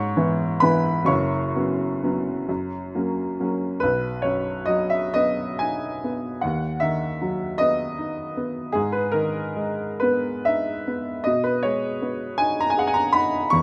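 Swaying in a gently rubato 6/8, this tender, dreamy romantic nocturne for solo upright piano has a woody, up-front tone, caught by close, detailed microphones in light reverb as its harmony settles onto a new passage at 3.8 seconds, in a fragment cut from a longer piece.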